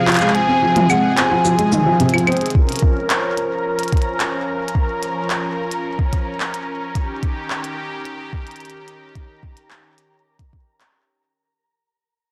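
A warbling, nostalgic lead with a triangle-and-sawtooth tone, chorus and tape echo opens this glitchy, intricate IDM passage at 109 BPM in Bb minor. A felt-muted upright piano plays dark, intimate arpeggios through a digital delay, and its action noise is audible, while a swirling, detuned sawtooth pad with phaser and chorus sustains chords beneath. Both the lead and the piano stop at 2.3 seconds. A clicky, overdriven drum kit of claves, handclaps, hi-hat, shaker and toms sits up front, and a soft electronic kick joins at 2.5 seconds as the harmony moves from Fm/C to Bbm and later to Eb7. A grainy, flickering granular texture high on Bb5 enters quietly at 2.8 seconds and carries its own reverb, and the whole passage fades out through a moderate room sound on a blown-out, overdriven recording.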